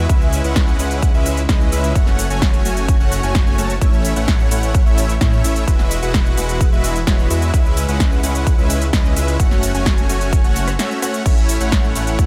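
A punchy, up-front electronic kick drives a straight 4/4 pulse at 129 BPM, joined by an overdriven big-room kit of crisp hats, snare, rim click, shaker, ride and crash, with a brief break at 10.8 seconds, in this emotional, anthemic slice of festival progressive house in C# minor. A huge, bright supersaw riff pumps against the kick through a diffuse ambient delay, cycling C#m7, F#m, A and Eadd9. Beneath it, a thick, mellow detuned saw bass with chorus pumps in the low register, all set in light digital ambience.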